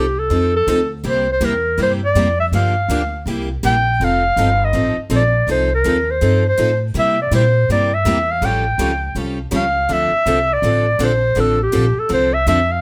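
A lively swung 4/4 pulse drives this short stretch of acoustic string swing in the jazz manouche style, cut from a longer piece and set in light reverb. Up front, a clarinet carries the solo melody with vibrato, a soft attack and scooped notes under a smooth top, while a woody, thumpy pizzicato upright bass on gut strings sits close by with a dark tone. Two bright picked steel-string acoustic guitars supply the accompaniment with audible finger squeak, one with fresh strings and the other boxy and placed in the background, over changes running from F7 through C7 and an A7alt to Dm7.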